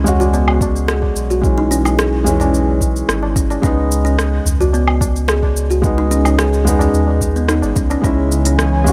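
Mystical and hypnotic, this short organic downtempo fragment in C# minor moves at 109 BPM, with a soft, intimate felt-muted upright piano (its action noise audible) pumping under sidechain and echoing through delay beside woody, thumb-plucked kalimba arpeggios, a round sine sub bass up front, an overdriven organic electronic kit of smooth hats, rim click, shaker and woodblock, a soft overdriven kick, and ringing high-tuned tabla in the background, while a detuned sawtooth analog pad with chorus and tremolo arrives only at 8.0 s, all in light digital ambience.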